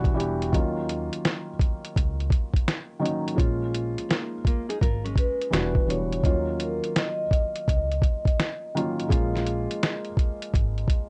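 Swung at 84 BPM in 4/4, a compressed, pitched-down sampler kit with a thumpy kick and fat snare sits up front in this reflective, nostalgic lo-fi hip hop excerpt in Eb minor, joined by a woody pizzicato upright bass and a felt-muted upright piano whose dark, intimate chords carry audible action noise, while a fingerpicked nylon-string guitar adds a filtered, analog-delayed second line from 4.1 to 5.5 seconds and a soft-mallet vibraphone takes the metallic, ringing melody with slow motor vibrato from 5.2 seconds, the piano adding a fill at 10.9 seconds over a dry, gritty cassette sound.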